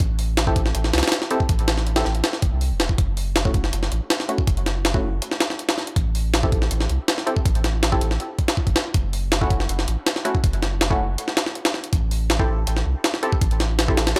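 A dark, nostalgic stretch of drum and bass with a jungle edge opens at once with a sampler-style drum kit and a soft dub sub bass sitting up front together. The drums sound compressed and pitched up, with a thumpy kick, a high-tuned snare and hi-hat, re-recorded in a large room for a gritty, hardware-worn character. Beneath them the sub bass is deep, round and sustained, its triangle and square-wave tone thickened by tube saturation. From 0.5 seconds a muted, detuned sawtooth chord stab drifts in further back, its filter sweep, chorus and dub echo giving it an evolving, mellow haze. The harmony moves between Am7 and F#m7 every few seconds, holding a brooding, reflective mood. The whole piece has a dry, transformer-saturated feel set in a digital ambience, and it is cut from a longer track, ending around 14.2 seconds.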